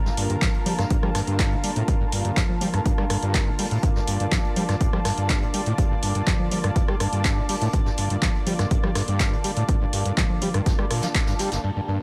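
A light reverb and a tape-warm, small-room drum sound frame this gritty, driving acid house excerpt, where a punchy electronic kick sits up front alongside an analog drum machine of congas, crash, handclaps, hi-hat, rim click and shaker, all darkened by low-pass filtering, while a very quiet brushed jazz kit adds a natural, acoustic hi-hat and snare. A squelchy, distorted sawtooth acid bass with tube saturation, resonant filter sweeps and sidechain pumping drives the riff over a G minor chord. Above it, a lush, thick, detuned unison pad holds bright chorused chords, and an ethereal triangle-and-sawtooth pad drifts in the background with phaser, ensemble chorus and a long release, both pads pumping with the kick.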